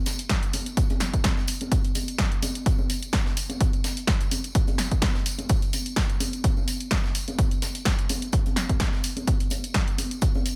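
A punchy electronic kick drum sits up front in this energetic, bittersweet house excerpt at 127 BPM in 4/4, running from 0.3 to 10.3 seconds with a lightly swung sixteenth-note feel. Beside it, an analog drum machine supplies hi-hat and a punchy snare, both up front with a tape-warm character and the sound of being re-recorded in a large room. A very quiet breakbeat sampler-style kit adds its own hi-hat and a high-tuned snare, compressed, pitched up and gritty. Bright acoustic congas and tambourine sit distant in a large room, filling out the percussion from 0.1 to 10.6 seconds. The overall mix is dry, a single driving section cut from a longer piece.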